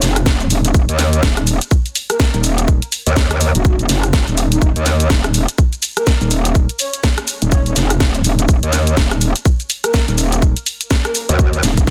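Swaggering and aggressive, this bass house excerpt is driven by a metallic, saturated wobble bass with tube saturation, chorus and sidechain pumping, sitting up front beside a tight electronic kick drum that enters at 0.3 seconds and a tape-toned garage drum kit of swung hi-hat, rim click, shaker and cracking snare. From 2.1 seconds a soft, breathy flute-like synth lead with vibrato, ensemble chorus, vintage 12-bit sampler grit and dub echo floats in the background. A drum fill arrives at 11.6 seconds, all within a dense, heavily limited mix and digital ambience.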